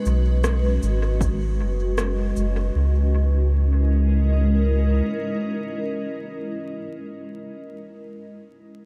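A dreamy, reverb-soaked mix with vinyl crackle frames this short, deep and hazy ambient dub fragment, where an up-front granular cloud pad holds blurred, evolving chords as they move from B69 to C#m69 at 2.7 seconds, a round, soft sub bass sits up front beneath it, an overdriven electronic shaker and rim click with dub echo stop at 2.5 seconds, and a punchy overdriven electronic kick drum sounds briefly in the background at 1.2 seconds.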